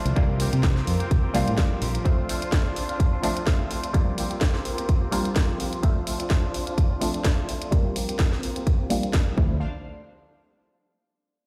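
A punchy, up-front electronic kick drives this funky, groovy filtered disco house at 127 BPM with a lightly swung 16th feel, alongside a house kit's cracking snare and pumping hi-hats; a fingered electric bass with tube saturation that plays until 2.0 seconds and returns at 9.4; a stringy, overdriven muted clav run through phaser; a twangy, clean electric guitar riff; and smooth, close violin section chords. The clav, guitar, violins and bass all pump against the kick beneath a long filter sweep as C7sus4 and Dm7 alternate, and the track sounds as if played through a big sound system in a bare stone room, cut from a longer piece.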